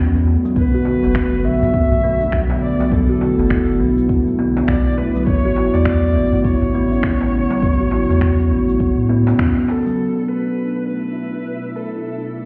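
Warm and hypnotic, this swung organic downtempo excerpt in B minor at 102 BPM sets a woody, ringing kalimba with tape echo and shimmer reverb over a detuned sawtooth analog pad, a round, pumping sine sub bass, a deep electronic kick, a crisp metal-shell darbuka in the background and filtered electronic shaker and finger snaps. A rich bowed kamancheh enters at 0.6 s with vibrato and portamento, and a sparkling granular texture with octave-up shimmer joins the pad and kamancheh from 10.6 s, the whole mix sounding muffled as if through a wall in a stone room.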